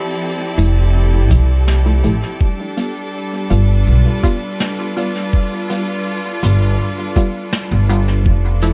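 Ambient dub in a spacious, peaceful mood, this excerpt opens with a rich, bowed string section holding smooth sustained chords over a glassy, drifting harmonics texture in the background, before a woody, growly pizzicato upright bass, muted sawtooth chord stabs with lush chorus and dub echo, and a vintage brush kit with a fat snare join at 0.6 seconds, followed by a muffled, thumpy electronic kick up front at 1.3 seconds, all moving from Fmaj7 to G7 in an echo-heavy small room.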